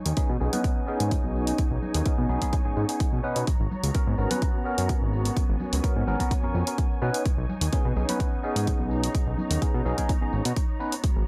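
Sensual and groovy, this short cut from a longer filtered disco house track moves in a straight 4/4 over a chord cycle of B69 and G#m11. A punchy, layered electronic kick sits up front beside a fat, thick analog bass whose detuned sawtooth tone has a fast attack and a decaying tail, the bass pumping under sidechain and softened by a low-pass filter. Dry, overdriven electronic hi-hats and a background layer of bright tambourine and hard-hand congas in a small room add the percussive drive, each breathing with sidechain pumping and the percussion also filtered. A barky, bell-like tine electric piano plays accompaniment through a phaser with vintage 12-bit sampler grit, filtered and pumping. Behind it all, a lush symphonic string section holds bowed ensemble chords with vibrato and a smooth top, tucked quietly in the mix and pulsing through the same filter and sidechain for the full 11.3 seconds.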